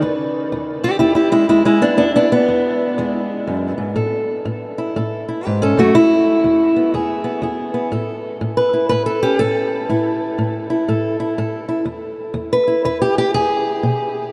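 This acoustic country blues piece moves at 122 BPM in 4/4, with a swung eighth-note feel in E major that sounds soulful and gritty. A fingerpicked steel-string acoustic guitar with a parlour-sized, boxy tone plays alone throughout, ranging from E2 up to B4. It sits up front in the mix, and the occasional finger squeak adds a close, human grit. The harmony moves from E to A5, back to E, then to A, before giving way to a chordless passage at 11.9 seconds. A huge, wet reverb places the guitar in a vast, echoing space, and its long tail lingers around each phrase of this short cut from a longer piece.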